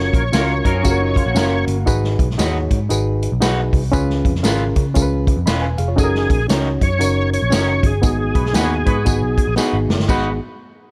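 Uptempo 1960s-style soul at 117 BPM with a swung 4/4 feel in G# dorian, urgent and driving: a gritty overdriven tonewheel organ with chorus vibrato and slow rotary speaker carries the melody at 0.0 and again from 6.0 s, over a barky, up-front reed electric piano, a dark foam-muted picked bass, a distant, roomy big-band drum kit with a boomy kick, bright twangy guitar stabs, a brief tube-saturated guitar riff at the start, jingly tambourine, and a mellow horn section that returns at 8.3 s before a closing drum fill, heard in a dry room.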